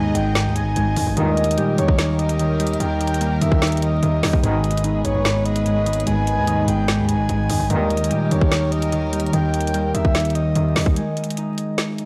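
A half-time trap groove at 147 BPM drives this dark, brooding hip hop passage in G# harmonic minor, with an up-front trap kit built on a hard-clipped kick, woody snare and warm hats, entering at 0.1 s and running to the end. Beneath it, a distorted 808-style bass hits heavy and saturated, its aggressive tone decaying after each fast attack, while a barely audible electronic downlifter opens the first 1.2 s. Mellow, round electric-piano-like synth keys carry the accompaniment in a low register, treated with chorus, tremolo and a filter sweep, and a bright, ringing concert harp adds fingerpicked arpeggios softened by a low-pass filter and tape echo. A breathy, flute-like synth lead with vibrato floats above as a second line, and a bowed string section sustains pure, airy sul tasto chords quietly in the background. Short stabs from a distant, roomy brass ensemble land with the chord changes at 1.2 s, 4.4 s and 7.7 s, and the gritty, dry hardware sound carries a layer of vinyl crackle before a brief break closes the passage on a G#5.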